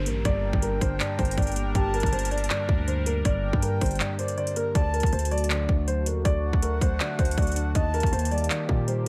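A trap drum kit hits up front in this short cut from a longer hip hop track, its hard-clipped kick, metallic hi-hats and handclaps overdriven and caught in a small room, driving a half-time feel at 160 BPM in G harmonic minor. Beneath it, a punchy, heavy 808-style bass with a fast attack anchors the low end, while a dark, mellow concert grand piano carries the melody through a low-pass filter. Soft, round electric-piano-like synth keys with chorus fill out the accompaniment, and a bright, evolving pad built from detuned sawtooth layers sustains chords through chorus and phaser. A breathy, flute-like synth lead with vibrato and digital delay adds a second line, and a faint electronic downlifter sits in the background for the opening 1.8 seconds. The mood is eerie and melancholic and the sound dry and close, with a brief break from 4.0 to 4.8 seconds as the harmony moves from G minor to D and then E-flat.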